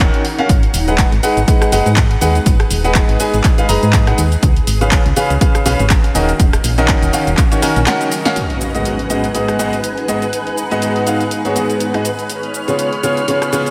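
A dreamy mix soaked in a lush hall reverb gives this short piano house excerpt a soulful, bittersweet glow at 122 BPM, with a lightly swung 16th-note feel in G# dorian. A clear, up-front grand piano plays the riff throughout, pumping against the sidechain and trailed by delay, over chords that move from G#m7 through C#7 to D#m7. The opening is anchored by a tape-warm, punchy electronic kick and a round, dark FM bass with a fast, decaying attack, while an analog drum machine keeps handclaps, hi-hat, rim click, shaker and a punchy snare ticking in a short room. A cloudy granular pad of detuned sine voices sits in the background, blurred by its own reverb and analog chorus. The kick and bass drop out by 7.9 seconds, a drum fill follows, and at 8.4 seconds an electronic impact lands as a shimmering vintage string machine of sawtooth violins slowly fades in, its ensemble chorus colored by a filter sweep and a moving notch.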